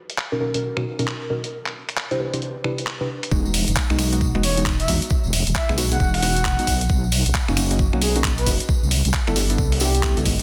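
Soulful and sunny, this 134 BPM two-step UK garage cut swings its gritty breakbeat snaps, claps and hats under deep, nasal chord stabs shaped by a filter sweep until the drop at 3.3 seconds brings in a dark wobbling bass, an overdriven knocking kick and a jingly tambourine, with a breathy flute-like synth lead carrying vibrato from 4.4 seconds over rich major-ninth chords in E lydian.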